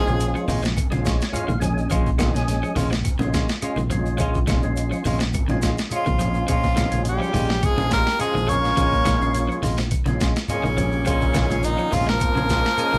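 A gritty, thumpy boom bap sampler-style drum kit leads a lightly swung afrobeat groove cut from a longer piece, with a fingered electric bass holding one low note over a Bbm7 chord while congas, a grainy shekere and woody claves sit in the background. A semi-hollow electric guitar adds dark, clean stabs, a slightly broken-up electric guitar picks arpeggios, and a fat, lightly overdriven tonewheel organ with key click, chorus vibrato and a slow rotary speaker plays a fill at 0.8 seconds. The horns sound briefly in the first 0.5 seconds. A brilliant trombone and a very quiet bass trombone return at 5.9 seconds, and an edgy, forceful tenor saxophone follows at 6.0 seconds, carrying the defiant, intense melody up front over them, all three scooping into notes, in a live room with short, wet ambience and some lossy compression artefacts.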